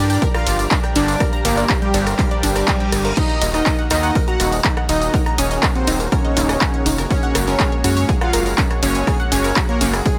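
A punchy, layered electronic kick sits up front in this dark, cinematic melodic techno excerpt, moving at 122 BPM in Eb dorian, with a gritty, aggressive synth bass close behind it, its saturated, wave-folded sawtooth tone sharpened by oscillator sync and a resonant filter pluck. Above them, a fat analog lead carries the melody with a detuned sawtooth, a sub octave, a filter sweep, vibrato and tape echo. A soft supersaw line with phaser and digital delay, a thick, warbling vintage pad with chorus, and a detuned unison pluck playing arpeggios through a moving notch and digital delay all sit in the background, while a very quiet granular cloud pad adds a blurred, evolving haze. The lead, supersaw, pad, pluck and bass all pump with sidechain compression, and so do the hats and cymbals of an analog drum machine that supplies crash, ride, hi-hat, handclaps and rim clicks, re-recorded in a small room. 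A jingly acoustic tambourine sits close and dry, a reverse cymbal sounds from 2.6 to 3.2 seconds, and the harmony moves from Gm through Ebm to Gbadd9 under a light reverb.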